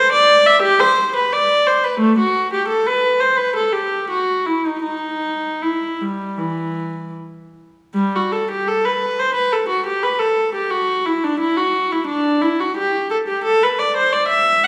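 Set in a reverberant church or concert hall with a 1.7-second decay, this short cut from a longer work places a single bowed viola close and up front, its reedy, gut-string tone carrying an airy bow in period style. The baroque-style suite movement is serene and flowing, moving at a rubato 72-89 BPM in 4/4 across a range from E3 to F#5. It opens in E minor and turns toward G major at 7.9 seconds.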